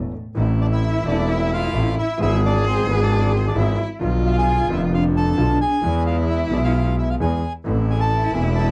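Rubato 4/4 at 132 BPM in A harmonic minor, this dramatic, sultry tango cut from a longer piece sets a clear, focused bowed double bass with vibrato up front beneath a dark, mellow concert grand piano with deep bass and audible action noise, while a distant, expressive bowed cello with vibrato and portamento carries the second line and a reedy, boxy bandoneon takes the melody from 0.6 seconds, all in a dry, close 1970s-style studio sound.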